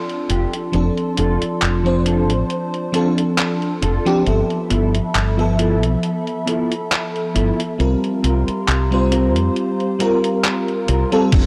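A slow, lightly swung 68 BPM groove in 4/4 carries this nostalgic, faded vaporwave excerpt in F major, moving through F6, G13 and C7sus4 chords as a detuned 8-bit drum machine ticks out crash, handclaps and hi-hat while a woody, round fretless bass sits up front. A lush, dreamy FM electric piano with a soft pad layer provides the accompaniment through chorus, cassette tape and analog delay, over a warbling, lo-fi tape-like pad of sustained chords, as a clean, fingered electric guitar plays a dark riff through chorus, low-pass filter and delay. A thumpy electronic kick lands only at the very end, at 11.3 seconds, all within a light reverb.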